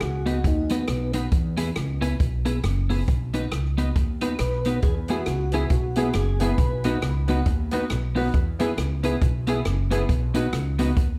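An upbeat, joyful ska groove swings along at 137 BPM in B major, its chords moving back and forth between B and E. This short excerpt is cut from a longer piece. A swinging big-band drum kit sits up front in a natural studio room, its hi-hat and rim click riding over a boomy kick. Beside it, a pizzicato upright bass sounds woody and growly with steel strings. A clean, picked electric guitar supplies compressed accompaniment coloured by analog chorus. A mellow, round tonewheel organ plays the melody in brief phrases, opening the track and returning at 4.4 seconds with a dark tone, vibrato, key click, a slow rotary speaker, dub echo and plate reverb. From 5.1 seconds a clear, slightly detuned upright piano adds stabs with long sustain and its own dub echo, all set in a light reverb.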